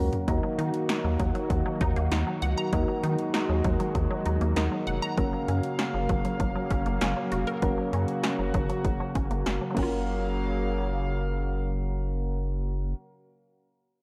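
Synth-pop at 98 BPM in F# major, this upbeat, bright excerpt opens with a drum fill and moves from D#m to F#maj7 at 5.2 seconds. A punchy analog drum machine drives the groove with kick, snare, hi-hat, toms and crash until 9.9 seconds, while a rubbery, bouncy square bass sits up front beneath it. A shimmering, retro pulse-width pad holds sustained chords with a slow attack and long release, alongside soft, round electric-piano-like synth keys with a gentle, vintage warble of chorus. Threaded through the mix, a resonant blip pluck spins juicy, squelchy arpeggios treated with chorus and slapback echo. The production is dark and warm, set in light reverb and digital ambience, and after the drums stop the pad, keys, bass and pluck carry the closing section from 10.1 seconds.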